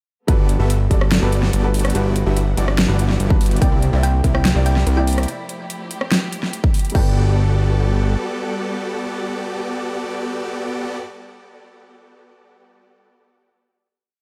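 A half-time future bass drop in G major at 144 BPM opens at 0.3 seconds with most parts arriving together: a punchy, overdriven electronic kick and a big-room dance kit with a huge snare, metallic hats, rim clicks, crashes and hat rolls, all up front with studio reverb. Beneath them a fat, detuned sawtooth bass follows the chord rhythm, while huge supersaw chords throb in dotted rhythms with sidechain pumping, moving through Gmaj9, Em9/G, C9 and Fmaj9. Further back, a felt-muted upright piano with audible action noise plays soft dotted-rhythm chords through a delay, and a distant, bowed string section holds a lush sustained pad. At 3.6 seconds a round, tine-like FM pluck with chorus and delay starts a repeating riff on a single high note, joined by a very quiet detuned unison pluck looping a six-step arpeggio that drifts against the bar. The drums drop out at 7.0 seconds as the music lands on a final Gmaj9, the bass holding until 8.2 seconds before the piano, strings, supersaws and pluck ring out together, leaving a bright, playful mood.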